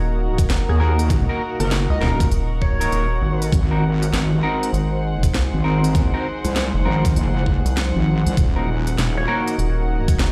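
A saturated, detuned wobble bass drives this gritty, swaggering glitch hop excerpt at 99 BPM in Eb dorian, with a swung 16th feel, riding over a bouncy, nasal square bass, a knocking electronic kick and a drum kit with a cracking snare, crisp hats and rim clicks, while a moody, full-bodied analog pad and reedy, bowed gut-string ensemble pump in the background, a clean, picked electric guitar adds delayed stabs, and an edgy, tearing sync lead with chorus and delay enters at 0.7 seconds, all moving from Ebm to Ab7 at 3.5 seconds and back to Ebm at 8.4 seconds in a large, bare-room sound.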